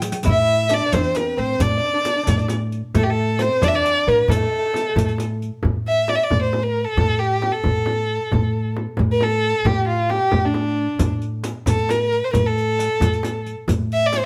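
Melancholic and soulful, this short cut from a longer Persian modal ensemble piece moves at 89 BPM in a straight 6/8, set in A dastgah shur. A dark, bowed violin carries the melody up front, its soft attack, vibrato and portamento giving the line an expressive, smooth-topped voice, with a plate reverb around it. Beneath it a woody upright bass plays pizzicato with steel strings, while a delicate, fingerpicked lute with gut double strings adds a second line only until about 5.1 seconds. The percussion opens with a drum fill at the very start: a tight tombak sits in the background with hard hands and a live-room sound, a small, bright frame drum played with soft hands stays close and dry, and a riq with dark jingles drops out after the first section and returns at 11.0 seconds. The whole is held in a light reverb, and the music passes from its opening section into a second one at 5.6 seconds.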